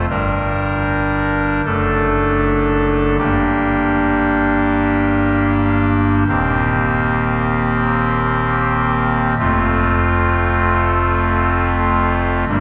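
Heard from far back in a church with a long, wet reverb and a softened top end, this reverent, serene classical chorale fragment, cut from a longer piece, features a solo pipe organ on a soft reed oboe stop with baroque voicing, placed up front and moving with a free rubato feel through Gm, D/F#, Cm7/Eb and F across its 12.6 seconds.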